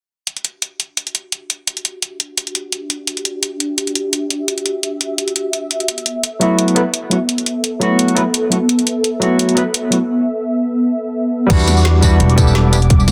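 A smooth, detuned sawtooth pad with chorus and sidechain pumping opens this dreamy liquid drum and bass excerpt in E minor at 171 BPM, moving from Em9 to B7sus4 under a filter sweep while a layered, swung kit of woody snare, metallic hats, crash and tambourine plays from 0.3 seconds. At 6.4 seconds a bright, barky tine electric piano arrives up front, clean through a combo amp and bathed in lush chorus and digital delay. The drop at 11.5 seconds returns to Em9 and brings in a tight electronic kick and a dark pizzicato upright bass that sits loudest in a dense, heavily limited modern master with digital ambience.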